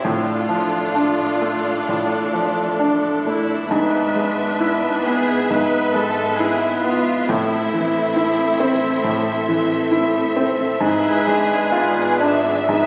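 A rubato pulse at 67 BPM in 4/4 carries this brooding, passionate romantic movement for piano and orchestra in A minor, cut from a longer piece. An up-front, clear grand piano leads the melody over a distant, lush violin section sharing the tune, a close second violin line and a smooth viola section. Beneath them sit cellos in the background and very quiet, expressive double basses, with barely audible soft-mallet timpani from 0.1 s and again at 7.3 s, while the harmony moves from Dm/A through E7/G# and Am to G#dim7, bathed in scoring-stage reverb and the crackle of a very old 78 rpm record.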